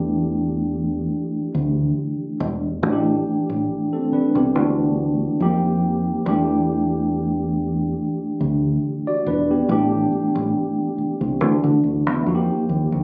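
A lightly swung, unhurried 4/4 pulse carries this sultry, late-night R&B fragment, where a mellow tine electric piano, clean and up front through its built-in speakers, cycles through Em7, Am7, Dadd9 and Fsus2 over a deep, round dub bass played fingered and amped with a dark, direct tone, both heard across the full 13.0 seconds in a moderate echo-chamber reverb and a muffled phone recording of a club room.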